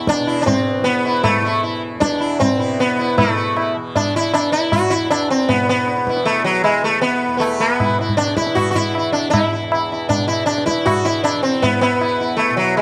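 Set in a moderate echo-chamber reverb, this serene, radiant Hindustani classical excerpt at 156 BPM places an up-front sitar, bright and buzzing with shimmering sympathetic strings, over a softly plucked tanpura drone in the background and low-tuned tabla with a short ring that enters at 0.1 s, with the music moving into a new section at 3.2 s.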